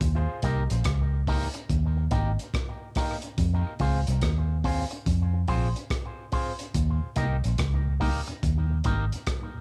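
Heavy and hypnotic, this dub reggae excerpt at 71 BPM with a swung 16th feel rests on a dark, round, foam-muted fingered bass and a gritty, saturated breakbeat kit of hi-hat, tight kick and rim click, while a bright, twangy envelope-filtered guitar with phaser and tape echo comes in at 0.4 seconds over Eb and Fm chords, and a mellow, flute-like tonewheel organ with chorus vibrato, key click, a stopped rotary speaker and tape echo slips into the background at 7.0 seconds, all captured dry on a cassette home recording.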